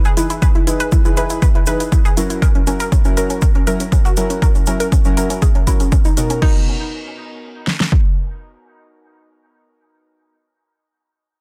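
A grainy tube shaker opens this uplifting, expansive progressive house excerpt at 120 BPM in B major, joined almost at once by a bright, detuned analog pluck playing arpeggios through chorus and dub echo, with a filter sweep on it until 6.4 seconds. Deep, soft chord stabs with sidechain pumping move over Emaj7 and F#7, while an up-front, overdriven punchy kick and fat snare play alongside dark hi-hats and crash cymbal. The shaker, hats and crash stop around 6.4 seconds as the harmony settles on Bmaj7, and the kick and snare stop at 8.0 seconds, leaving the pumping pluck and stabs in a dry, dense, heavily limited mix.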